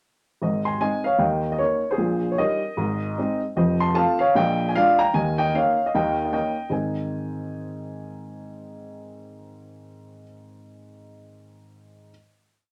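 A woody upright piano carries this short, complete stride jazz piece alone, its tone warm and up front with a long sustain. It plays from 0.4 seconds, setting a stride bass under a tune voiced in thirds. The mood is playful and exuberant, at a brisk 152 BPM in 4/4 with a light swing on the eighth notes, in A-flat major. The piano ranges from deep F1 up to C6. The harmony moves through Ab, Eb and Eb7 over Bb, then F and Bb7, before the piece settles on a closing Ab chord at 6.7 seconds that rings until 12.1 seconds. A wet studio ambience with a short reverb gives the piano a lively, intimate space.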